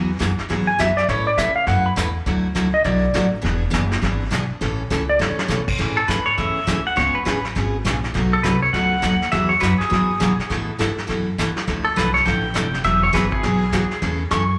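Western swing country at 204 BPM in A major, playful and swinging, heard live through a club's sound system, with a twangy, clean lap steel guitar with slapback echo carrying the melody from 0.7 seconds, a short brush drum fill at 4.9 seconds, and a bright, compressed pedal steel guitar, also with slapback echo, taking the solo from 6.0 seconds, all over a full-bodied picked acoustic guitar with audible finger squeak, a woody, thumpy pizzicato upright bass, and a vintage brush kit with dark cymbals and a punchy kick.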